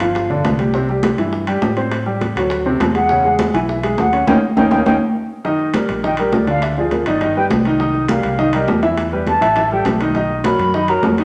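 Lively and danceable, this Afro-Cuban jazz clip sets an up-front, short-sustained baby grand piano over a dark, round fingered electric bass, ringing hard-hand congas, metal-shell timbales and soft, low-tuned bongos in the background, while a pure, hollow silver flute with vibrato sings briefly at the start, returns at 3.0 seconds, and launches into a solo at 5.4 seconds after a band accent and drum fill, all inside a large, reverberant studio space.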